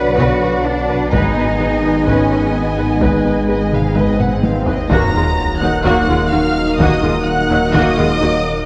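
From the opening moment, a futuristic, relentless cinematic score in Eb minor at 127 BPM begins: a lush violin section carries the melody over a focused chamber violin line, an intense viola section, smooth cellos, a distant double bass section and a menacing detuned saw bass, while bright trombones and dark, roomy French horns hold chords. A very quiet ethereal pad and a soft, round pluck playing arpeggios sit beneath the strings, and a band-limited taiko ensemble pounds in the background. An electronic swell and sub drop arrives around 3.9 seconds, building through a drum fill into an impact at 4.9 seconds as the harmony lands on Ebm, all bathed in concert-hall reverb and a worn, warbling cassette-tape drift.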